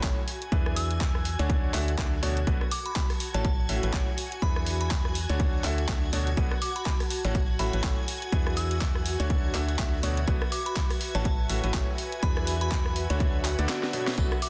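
Energetic and soulful, this piano house excerpt moves at 123 BPM with a swung 16th-note feel, as a brilliant concert grand piano riff with tape echo, a hollow organ-like FM bass with tube saturation, shimmering vintage string-machine violins and an airy, breathy pad all pump against the sidechain over a cycle of A6, E7, Dmaj7 and Bm7. A punchy, tape-warm electronic kick sits up front beside an overdriven garage kit of handclaps, hi-hat, rim click and cracking snare, while a glassy, crystalline FM bell melody with chorus enters in the background at 0.8 s. A drum fill arrives at 13.7 s, and a brief tambourine appears at 14.2 s in a dense, heavily limited and fairly dry mix.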